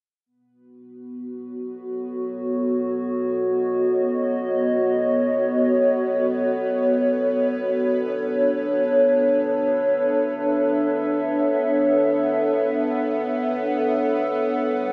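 In free time with an unmeasured pulse, this luminous, serene ambient passage is an excerpt cut from a longer piece, tuned to A4 = 442 Hz. A warbling, tape-like synth pad sits up front from 1.1 seconds, holding sustained chords with slow attacks and long releases, its detuned square and triangle tones and sub octave giving a dark, nostalgic, lo-fi vintage colour thickened by chorus and its own reverb. Beneath it, from 1.0 seconds, a quieter bowed-like synth drone adds a tense, string-like sawtooth layer with unison detuning, a noise layer, vibrato and its own reverb, fading in across the passage. The harmony rests on B7 before shifting to Dmaj7 at 7.4 seconds. A vast, wet cathedral reverb with a 5.8-second decay bathes the sound in a hazy, glowing space.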